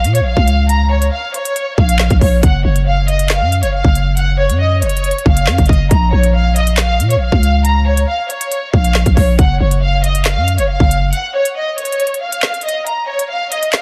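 The dry mix carries a trace of lossy compression grit, and it sounds cut from a longer drill track with an ominous, tense mood at 138 BPM in a half-time 4/4 feel. A lush bowed violin section carries the melody, with focused vibrato softened by a low-pass filter and trailed by tape echo. Beneath it, a buzzy, growling 808-style bass with a fast attack and decaying tail sits up front until 11.1 seconds. The electronic drum kit pairs a hard-clipped kick with a woody snare, handclaps and crisp hats. The harmony moves between Bb minor and Gb, and after a break from 11.1 seconds the kick drops out at 12.9 seconds as the chords give way to an open, unharmonised close.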